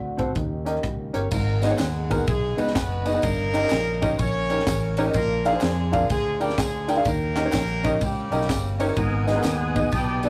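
Fervent and solemn, this uptempo gospel piece in G# harmonic minor moves at 126 BPM with a swung feel, built on a woody, slightly detuned upright piano with audible action noise, a punchy fingered electric bass, and a crisp fusion drum kit with a high-tuned snare and a pumping small-room sound. A mellow French horn section holds chords until 1.3 seconds, when a clear horn section with octave doubling takes the melody and dry tambourine, maracas and group handclaps join in the background. At 9.0 seconds a smooth tonewheel organ adds sustained chords with key click, chorus vibrato and a slow rotary speaker, all inside a rough rehearsal-room recording with tube saturation and a moderate booth ambience.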